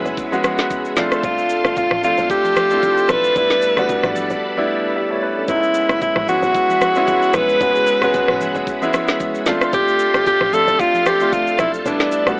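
Amapiano at 113 BPM in 4/4 with a light 16th-note swing, this hypnotic, soulful cut from a longer piece rides a cycle of suspended ninth chords on F#, G and A. A clear alto saxophone takes the lead from 1.2 seconds, up front with vibrato and scooped notes in a pop style, while an intimate concert grand piano with audible action noise, deep bass and long sustain plays the accompaniment, also up front. Underneath, a string machine voicing cellos holds full-bodied sawtooth chords with a sub octave, slow attack and ensemble chorus, and a barely audible electronic downlifter sounds only in the opening moment. The smooth R&B drum kit has an electronic, produced character, with a knocking kick, a snare carrying a woody tone, plus rim click, shaker and toms, all tape-tinged, while a punchy, decaying log drum bass and bright, thin-skinned congas sit in the background. A brief break arrives at 4.4 seconds, and the kick is muted for the last half second. 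Light reverb and an AM radio coloring shape the sound of the whole mix.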